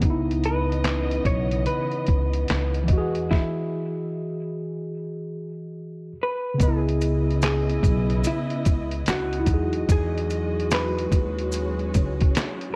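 A swung 73 BPM lo-fi hip hop groove in 4/4 rides on a compressed, pitched-down sampler drum kit with a thumpy kick, fat snare, hi-hat and handclaps up front, beneath a woody pizzicato upright bass, with a stop in the beat from 3.3 to 6.6 seconds. A worn, slightly out-of-tune tine electric piano with cassette-tape grit and a lush, bowed string section with vibrato lay down C#m9 and Emaj9 chords in a dreamy, mellow haze. A dark, hollow-body jazz guitar carries the melody through tape echo, and background maracas join at 6.6 seconds under light reverb and studio ambience in this excerpt from a longer piece.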